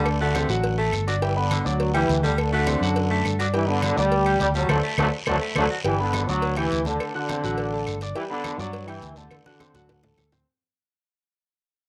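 A home cassette recording with moderate studio reverb carries this festive, danceable salsa fragment, where a mellow, punchy trombone section plays the melody up front over a bright, amped fingered electric bass and a clear concert grand piano with deep bass, long sustain and audible action noise. A raspy, gritty baritone saxophone adds a second line until the band accent that ends at 5.8 seconds, after which the music fades out over the alternating D7 and G chords. Behind them sit low-tuned congas, a tight cowbell and high-tuned bongos, woody claves and a close guiro, with drum fills marking the close of each half.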